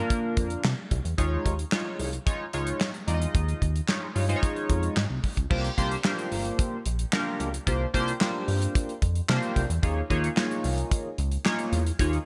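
Funky and danceable, this excerpt of early-eighties boogie funk at 111 BPM in C phrygian moves between C9sus4 and Eb9sus4, with a glossy, mellow chorused polysynth under a phaser, a dark, evolving pulse-width synth bass, and a damped 70s drum kit of tight kick, medium-tuned snare, handclaps, hi-hat and dark crash cymbal bathed in gated reverb, all framed by bright 1980s-style digital production.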